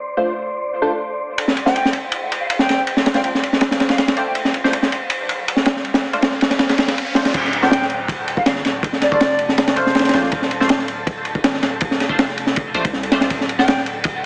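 Drum and bass with a jungle edge at 161 BPM in D minor, this atmospheric, raw passage opens on a breathy, wind-like tuned noise texture and a nasal, band-passed sawtooth chord stab on Dm7, its filter sweeping under phaser, chorus, cassette tape and dub echo, while a crunchy, gritty breakbeat kit with a punchy kick and high-tuned snare enters up front at 1.4 s. A distant, airy silver flute carries brief dub-echoed phrases, and a very quiet electronic riser builds from 5.4 s into the drop at 7.3 s, where a deep, mellow 808-style sine bass with tube saturation sits in the background. The whole mix has a heavily compressed, small-speaker radio sound with a small room ambience.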